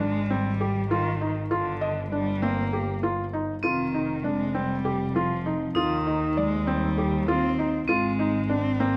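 A bowed cello carries the melody from the start, nasal and expressive with portamento and vibrato, over a felt-muted upright piano playing intimate, mellow arpeggios with audible action noise, and a bowed double bass with a focused, boxy tone. This playful, shimmering contemporary instrumental moves in 7/8 at 198 BPM (counted in eighths) in Ab lydian, with harmony shifting from Abmaj7#11 through Gm7, Fsus2 and Eb6. At 3.6 s a vibraphone struck with hard mallets adds a bright, metallic second line with a slow motor vibrato, all set in the moderate reverb of a scoring stage.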